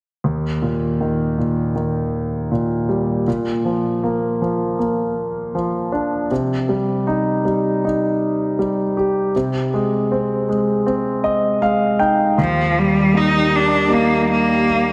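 A warm concert grand piano opens this tender, hopeful pop excerpt in Eb major at 79 BPM, carrying the accompaniment with deep bass, long sustain and an intimate, polished presence, its action noise audible up front. The piano moves through a progression from Eb to Bb, Cm and Ab/C, then plays a fill at 10.9 seconds that leads into a new section. At 12.4 seconds a single bowed cello enters with a clear, focused melody, its vibrato sitting up front beside the piano as the harmony returns to Eb. Moments later, at 12.6 seconds, an airy, breathy pad slips in behind them, holding soft, mellow sustained chords with a slow attack, a detuned sawtooth and triangle blend, a noise layer, a moving notch and chorus. The whole mix is soaked in a lush hall reverb that gives it a dreamy glow.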